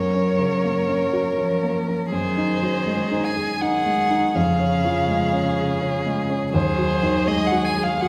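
This is a slow, romantic classical movement for piano quartet, a tender and lyrical fragment cut from a longer piece, moving in 3/4 at about 81 BPM with a freely flowing rubato. One violin carries the melody up front with a smooth, even tone and vibrato. A second violin and a cello play supporting lines beneath it, both rich and expressive, shaping their notes with vibrato and portamento. The cello's entries have a soft attack. A warm, slightly worn baby grand piano sits present and up front, giving the accompaniment and reaching down to the deepest register of the group. All four parts play together through the whole 8.1 seconds, over a harmony that moves from Gb through Ab7/Gb and Db/F to Ab7/Eb, all bathed in the wet reverb of a recital hall or church.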